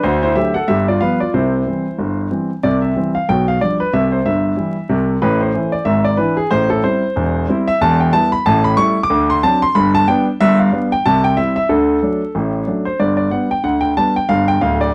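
Stride jazz with an exuberant, swinging feel, carried by a solo grand piano that sounds warm and up front as it ranges from D1 to D6 across this 14.9-second excerpt. The recording has a dry, close 1970s-style studio character, with light reverb on the piano and a layer of vinyl crackle. Midway through, the harmony moves through a minor-tinged passage before returning to the opening material at 13.0 seconds.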